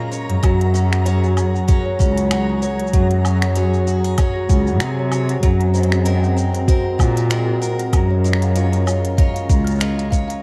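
Dark, warm production in a small room gives this short excerpt of hopeful, pastoral folktronica an intimate glow. At 96 BPM in 4/4 with a light sixteenth-note swing, it sits in Gb lydian, moving from Gbsus2 to Abadd9/Gb at 5.4 seconds and Bbm7/Gb at 7.9 seconds. A bright, boxy parlour steel-string guitar picks arpeggios with audible finger squeak, while a hollow, ringing kalimba plays a second line through tape echo. A produced electronic kit of finger snaps, crisp hats, shaker and woodblock enters at 0.1 seconds. Up front, a soft, tape-toned electronic kick arrives at 0.4 seconds, and a bowed solo cello with vibrato carries the bass in a woody, distant voice. In the background, a smooth, detuned sawtooth pad holds sustained chords with chorus, and a grainy, flickering granular texture drifts on its own reverb.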